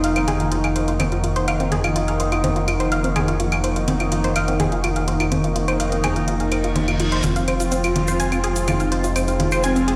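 A dark, melancholic melodic techno excerpt opens with a round, mellow analog bass up front, a tight sawtooth arpeggio and brassy, warbling analog pad stabs both under filter sweeps with chorus and delay, a deep, moody ambient pad in the background, a very quiet swarming granular drone, and overdriven electronic hi-hat, claves and congas with metallic hats, before a reverse cymbal at 6.6 seconds ushers in an expressive, smooth portamento lead with vibrato and tape colour plus a grainy acoustic tube shaker at 7.2 seconds as the harmony moves from Ebm7/F to Fm7, all heard through a lush hall and stony room ambience.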